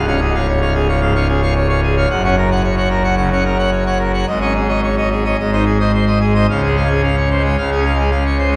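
Straight 4/4 at 110 BPM drives this jubilant classical organ toccata in Db major, a brief cut from a longer piece in which a solo pipe organ on full registration, its mixtures brilliant and majestic in a romantic voicing spanning Db1 to Gb5, moves through Db, Gb, a suspended Ab and its resolution before returning to Db at 6.5 seconds, the organ sitting up front yet heard from further back in a cathedral whose 4.5-second reverb rings long around it.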